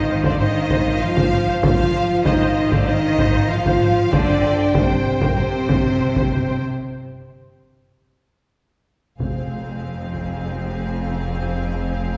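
Epic orchestral film score in F dorian at 96 BPM, heroic in mood. This brief section is cut from a longer piece and heard from further back in a wet scoring-stage reverb. A clear, smooth violin section carries the melody over a lush second violin line in the background, mellow French horns holding sustained chords, a focused viola accompaniment, and a bass formed by rich, distant cellos and clear double basses. Hard-stick taiko drums with a vintage, band-limited sound drive the music until 10.4 seconds, with a break from 6.6 seconds and a drum fill from 8.6 seconds, and a short, dry burst of hard-mallet timpani enters at 9.2 seconds as the harmony arrives on F minor.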